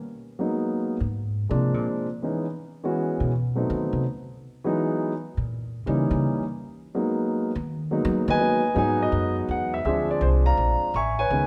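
A moody, smoky jazz piano trio waltz in G# minor at 165 BPM, swung in 3/4 and cut from a longer piece, where an up-front grand piano with long sustain carries the melody from 0.4 s over rich chords like G#m9, B7b9 and Amaj9#11, while a woody, thumpy pizzicato upright bass on gut strings enters at 1.0 s and takes a solo through 8.8 s, all bathed in the lush reverb of a recital hall.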